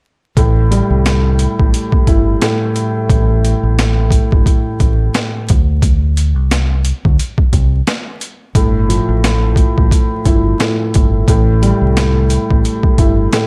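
From 0.4 s a dark, woody upright piano, boxy and slightly detuned with long sustain and filtering at both ends, sits up front beside a round, deep fingered electric bass and a gritty, overdriven sampler-style drum kit with a thumpy kick, high-tuned snare and hi-hat, pitched down and compressed. This reflective boom-bap hip-hop cut moves at 88 BPM in A minor with a 16th-note swing, its chords drifting from A7(no3) through Csus2 and Gsus2 to Am7. Vinyl crackle and a dry, close sound frame the excerpt, though the drums carry the ambience of a large room.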